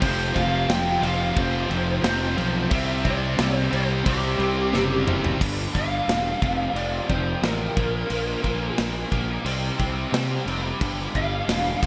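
Driven by a straight 4/4 pulse from a big, up-front rock kit with a punchy kick, bright cymbals and gated reverb, this heavy, aggressive hard rock excerpt layers a growly fuzz bass and a bright, chorused cranked stack guitar riff with a sludgy background guitar and a very quiet double-tracked distorted guitar that both drop out after a drum fill ending at 5.4 seconds, when the dark, lo-fi lead guitar, soaked in lush chorus and digital delay, takes a solo through the end in a bright 1980s-style production with a lush hall reverb.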